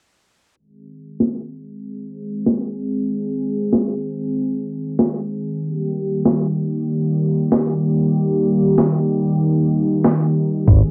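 Nostalgic and dreamy, this short synthwave excerpt moves at an easy, straight 4/4 pulse. A vintage analog pad carries sustained chords from 0.6 seconds, its detuned sawtooth tone warbling under subtle chorus, sidechain pumping and a filter sweep, shifting from Ab to Eb at 5.6 seconds. An up-front electronic snare with gated reverb and a tape-softened, sampler-style sound punctuates the pad until 10.2 seconds. At 10.7 seconds a bright, punchy picked electric bass sounds a low Ab alongside a thumpy kick drum sitting in the background. The whole cut feels like a home cassette recording, dulled by a low-pass filter and placed in a wet small room.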